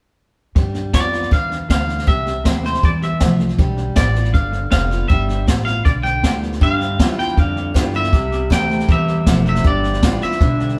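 A straight 4/4 pulse at 158 BPM drives this rowdy, retro rockabilly excerpt in G mixolydian, carried by a jazz brush drum kit whose high-tuned snare, boomy kick and hi-hat sit up front with a rolled-off top. Beneath it, a pizzicato upright bass on gut strings gives a woody, thumpy low end, while a full-bodied dreadnought steel-string acoustic guitar fills in picked accompaniment. An electric guitar through a small old amp plays a low riff in the background, its slightly broken-up tone bathed in spring reverb. From 0.9 s a bright, clean, scooped twangy electric guitar takes the melody up high. The changes move between G7 and C, with a second section arriving at 6.6 s, and the whole band plays live together in a stone room with a moderate reverb tail.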